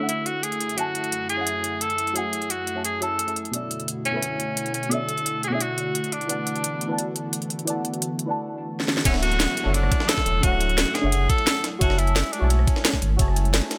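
A lightly reverberant digital ambience surrounds this dreamy liquid drum and bass excerpt at 174 BPM in D lydian, where a clear, vintage-toned tenor saxophone carries an up-front jazz-style melody with vibrato and scooped notes over deep, mellow chord stabs under chorus, phaser and a filter sweep, an airy, breathy pad, and a crisp, cracking drum and bass kit moving through Dmaj9, F#m7, Bm11 and E7sus4. After a drum fill at 8.8 seconds, the drop lands at 9.1 seconds, bringing in a round sine sub bass, a knocking electronic kick, a gritty, pitched-up sampler-style jungle kit set back in a large room, and a distant downlifter that ends at 11.8 seconds.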